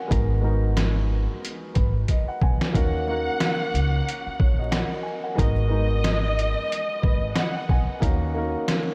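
A mellow, deep-toned concert grand piano with filtered, cassette-tape coloring opens this tough, dark boom-bap hip-hop excerpt in G# minor at 91 BPM with a swung 16th-note feel, joined at 0.1 s by a woody pizzicato upright bass on gut strings and an up-front, muffled sampler-style drum kit with overdrive, 12-bit grit and a thumpy kick over chords moving between G#m7 and D#m7, and after a drum fill at 2.1 s a distant, focused bowed violin section with vibrato and delay carries the melody from 2.8 s, all in a dreamy, reverb-soaked mix flecked with vinyl crackle.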